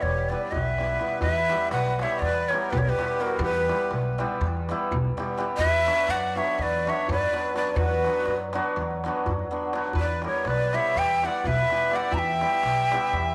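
A 9/8 metre at 247 BPM, counted in eighths and played straight, sets this short Balkan wedding-band cut in E minor moving in a bittersweet yet fiery mood. Up front, a breathy ney carries the melody with reed-cane grain, tongued, vibrato-laden phrasing and an expressive, close-miked presence, trailed by tape echo. Beneath it, a reedy accordion with slow beating plays a dry, full second line, while a bright hammered dulcimer supplies shimmering, ringing accompaniment. An upright bass played pizzicato gives a woody, steel-string bottom, and a clay-shell darbuka with natural skin sits deep and distant in the background, struck with hard hands in a large room. The harmony rests on Em, shifts to Bm/E at 5.6 seconds and returns to Em at 10.0 seconds, all within a light studio reverb.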